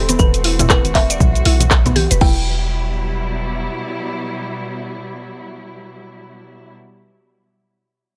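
This short, driving afro house fragment at 119 BPM in E minor with swung 16ths opens on a house kit with bright hats, cabasa, handclaps, rim clicks, toms and crash, soft-handed low-tuned congas in the background, a deep, boomy 808-style bass and a woody, chorused FM pluck spinning arpeggios through analog delay, with the bass and pluck pumping to the sidechain. A punchy, layered electronic kick joins at 0.2 s. The drums fall away at 2.3 s and the bass fades by 3.7 s, leaving a hollow, vintage kalimba melody with delay and dark, veiled con sordino strings, also pumping, sustaining Am/E into Emadd9 until 6.7 s in a dry, gritty recording.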